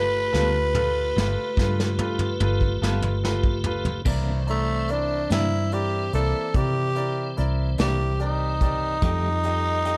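Rollicking and swaggering, this slow blues in 12/8 moves at 48 beats per minute with a straight feel, cut from a longer piece and set in light reverb. A growling tenor saxophone carries the melody up front, its tone breathy, raspy and gritty with a soft attack in a jazz style, and it takes a solo from 4.1 s as the chords shift from G9 to C9 and then to F9 at 9.0 s. Beneath it, a dark, round, foam-muted electric bass sits equally forward, while a clear, natural grand piano adds accompaniment. A tonewheel organ holds sustained chords with a piping, scooped sound, key click, chorus vibrato and a slow rotary speaker. A clean, picked electric guitar with tremolo stays compressed in the background from 0.3 s to 9.3 s, and a vintage brush kit enters at 0.3 s with dark cymbals, a punchy kick and a pumping small-room sound, opening with a drum fill.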